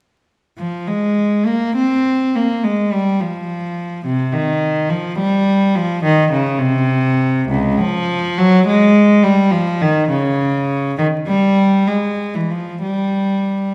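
A classical, baroque-style suite movement for unaccompanied cello, this short excerpt unfolds in F minor with a flowing yet solemn character. The pulse moves in 6/8 at roughly 62-73 BPM counted in dotted quarters, handled with a free, rubato feel that lets phrases breathe. A single bowed cello carries everything from 0.6 to 13.7 seconds, ranging from Db2 up to C4 with a rich, reedy gut-string tone played in period style. The instrument sits close and up front, while a wet recital-hall reverb of about 1.5 seconds blooms around it, suggesting a church or concert hall. A vinyl crackle adds an aged patina to the sound, and the tuning rests slightly below modern pitch at A4 = 439 Hz.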